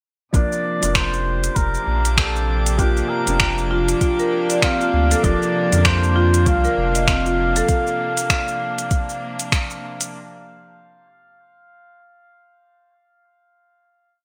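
Organic downtempo at 98 BPM with a gentle swung 16th feel and a peaceful mood, where a veiled cup-muted trumpet sings motif-based call phrases through vintage sampler grit and delay over soft held quartal chords from a felt-muted upright piano with audible action noise, earthy bowed chamber strings with light vibrato, a round dub-style sub bass, a soft electronic kick and a crisp, up-front layered beat of cabasa, finger snaps and closed hi-hat under gated reverb, while a glassy drifting-harmonics texture enters in the background at 1.3 seconds, a woody marimba arpeggio sequence joins at 2.8 seconds, and the strings and kit carry on to the close at 10.1 seconds, all set in a lush hall with bright 1980s-style digital production.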